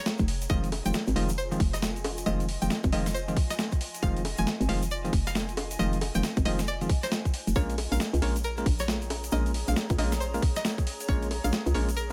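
A twangy, warbling resonator pluck carries the melody from the very start, its vintage string-like tone coloured by chorus, phaser and tape echo, while a cloudy granular pad drifts in the background with its own reverb and sidechain pumping. This moody, bouncy excerpt of two-step UK garage soon settles into a swung groove as a tight, tape-warm electronic kick and a hollow, knocking FM bass sit up front. A gritty, overdriven breakbeat kit, sampler-style and compressed, adds bongos, hi-hat, rim click and a medium-tuned snare, with a grainy tube shaker sitting distant in a large room behind it. From about 0.5 seconds a bell-like tine electric piano plays clean, direct stabs with a touch of tape echo. The harmony moves from Fm7 to Bbm7 at 7.6 seconds, and the kick drops out at 11.2 seconds while the other parts carry on almost to the close of this dry mix.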